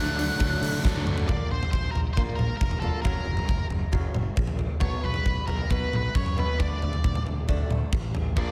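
A huge arena drum kit sits up front in this restless, anthemic slice of quiet-loud alternative rock, its punchy kick, medium-tuned snare, hi-hat and toms filling a pumping hall sound, with a fill from 0.8 to 1.3 seconds. Over it, an octave-fuzz lead guitar carries the melody throughout in a warm, distorted tone with slapback echo and analog delay. Two thick fuzz guitars open the piece with a bright, picked riff under slapback echo, one set further back, and both drop out at 1.3 seconds, when a boxy, picked swing-style acoustic guitar takes up arpeggios with audible finger squeak, slapback echo and analog delay. One fuzz guitar flickers back in at 8.4 seconds. A growly, direct fingered electric bass sits in the background throughout, and the harmony moves from D to Bb and Gb before landing on B5 and D5, all wrapped in light reverb and small-room ambience.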